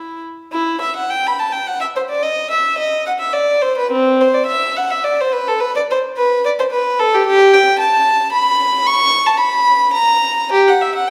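Introspective and solemn, this short excerpt of a baroque-style suite movement features a single unaccompanied violin in E minor. It moves in 3/4 with a flexible rubato feel, its pulse drifting between 99 and 114 BPM. The violin plays alone for the full 11.1 seconds, ranging from C4 up to C#6. Its period-style, gut-string sound is nasal and reedy, with an airy bow, and it sits close and up front. Around it, a wet recital hall reverb lingers for about 1.4 seconds, giving the sense of the room heard from further back.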